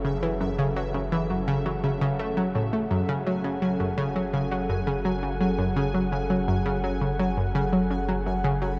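An up-front analog pluck carries a bright, ring-modulated riff at the heart of this hypnotic, expansive ambient space-music piece in F# minor at 84 BPM, its sound shaped by chorus and analog delay. A detuned sawtooth pad fades in with sustained F#madd9 chords across the full 8.8 seconds. Alongside it, a pulsing, tempo-synced gated texture also fades in high above, while a round sine sub bass anchors the low end, all set in a dark, huge reverb with an 8.6-second tail.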